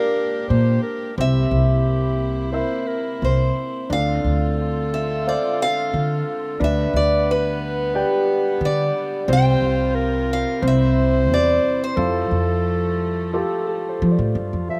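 Dry and close, with almost nothing of a room around it, this intimate, heartfelt acoustic folk-pop ballad moves at 89 BPM in F major, where a bright, boxy picked steel-string guitar with audible finger squeak carries the melody while a soft-attack classical clarinet sings a second line. A smooth vintage grand piano with audible action noise and deep bass supplies the accompaniment, and a mellow, ringing fingerpicked harp adds arpeggios in the background, with the guitar, clarinet, piano and harp each touched by a slapback echo. Distant, floating bowed chamber strings hold sustained chords, and a woody, thumpy pizzicato upright bass on gut strings enters up front at 0.5 s, as chords drift from Bb6 through Dm7 and Csus4 to settle on Fadd9 at 12.0 s.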